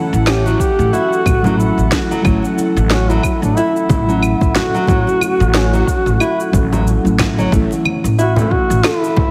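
A mellow duduk carries the folk-style solo melody with vibrato and scooped notes, its soft attack trailed by tape echo over a peaceful, organic downtempo groove at 91 BPM with a swung 16th feel. Muted, felt-like synth keys and a warbly, nostalgic tape-like pad hold the chords, F#m7/A resolving to A at 7.5 s, where the pad drops out, while fingerpicked nylon-string guitar arpeggios with finger squeak ring alongside a woody, thumpy upright bass that pulses under sidechain pumping. A deep, layered electronic kick, a sharp snare with shaker and claves, and very quiet, distant congas sit in a moderate echo-chamber reverb, all pressed into a heavily compressed, radio-like sound in this short cut from a longer piece.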